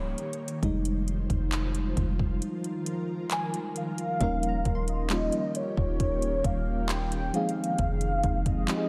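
A dreamy, reverb-soaked mix frames this moody, longing snippet of contemporary R&B, built on a mellow FM electric piano with tremolo and an ethereal, airy pad that holds sustained chords through its chorus and tremolo. A round, dark 808-style bass and a smooth electronic kit with soft kick, metallic hats and handclaps sit up front. At 3.3 seconds a velvety, warbling synth lead with chorus and delay takes the melody, joined at 4.2 seconds by a faint, glassy wavetable pluck in the background as the chords move from Fm7 to Eb7 and back.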